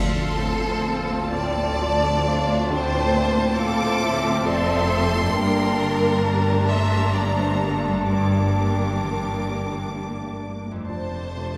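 Moving and longing, this slow, rubato cinematic excerpt in D minor and 3/4 at 62-69 BPM sets a lush violin section melody over a second violin line, an expressive viola section with portamento, rich bowed cello and double bass sections, a soft felt-muted upright piano, a distant hollow wooden flute entering at 0.9 s, background oboe, very quiet clarinet, mellow French horn chords and ringing harp arpeggios, plus barely audible timpani that fall away by 1.3 s, all bathed in a vast cathedral reverb as the chords move from Dm7 to Gmadd9.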